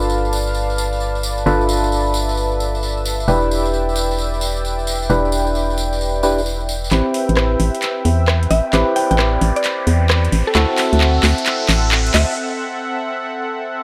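Moody and late-night, this two-step UK garage excerpt moves at 132 BPM in A minor with a swung sixteenth-note feel, its chords shifting from G7 and Em7 to Am9 and D7. A smooth, detuned sawtooth pad holds sustained chords beneath everything, given motion by chorus and tremolo. A hollow, nasal organ stab, treated with subtle chorus and analog delay and shaped by filter sweeps, sits over a dark, up-front FM bass with a fast, decaying attack. A jingly acoustic tambourine carries the opening until the overdriven garage kit of handclaps, metallic hi-hats and rim clicks arrives at 6.9 seconds with a drum fill and a build-up, while a background riser begins at 8.4 seconds and a woody, round mallet-like pluck with chorus and its own filter sweep plays a melody alongside it. The arrangement drops into a break at 12.4 seconds, leaving the dry, gritty hardware recording with light digital ambience.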